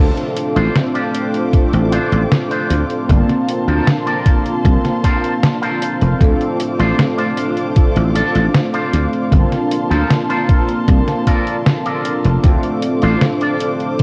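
Awash in worn, warbling cassette-tape drift and light reverb, this melancholic, nostalgic vaporwave excerpt sets a round, detuned synth brass with 12-bit grit and tape echo over smooth bowed chamber strings in the background, with a growly, punchy thumbed slap bass up front, a detuned 8-bit drum machine's hi-hat and snare, a twangy envelope-filtered electric guitar riff from 0.6 seconds, and a thumpy electronic kick that joins at 1.5 seconds.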